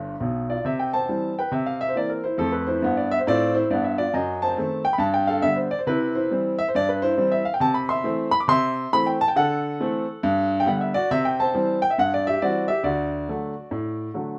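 This is a stride piano jazz excerpt, exuberant and swinging, in C major at 138 BPM in 4/4, with a 63% swing on the eighth notes. A solo grand piano carries the whole piece from 0.0 to 14.4 seconds, covering a broad span from G1 in the bass up to D6 at the top. Its tone is warm, smooth and vintage, sitting up front in a moderate studio reverb that gives it a little room around the notes. The harmony moves from C through C7 to Fmaj7 and a passing F#dim7 before settling on G. It then returns to C and travels through Am/C and D9 to G and back to C. The instrument is tuned slightly low, at A4 = 439 Hz, and the passage is clearly cut from a longer performance, ending on a D chord at 12.8 seconds.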